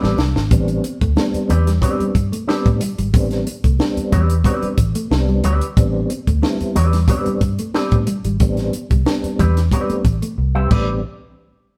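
Funk in A minor at 91 BPM, this hypnotic, funky clip cut from a longer piece rests on a single Am11 chord, with a compact cocktail drum kit up front (punchy kick, high-tuned snare, dark cymbals) opening and closing on drum fills, a foam-muted, round electric bass, a bright, twangy envelope-filtered guitar accompaniment, a dark, fingered guitar riff in the background, mellow tonewheel organ stabs turning through chorus vibrato and a slow rotary speaker, and very quiet, damped congas, all sharing a moderate stone room as a band playing live.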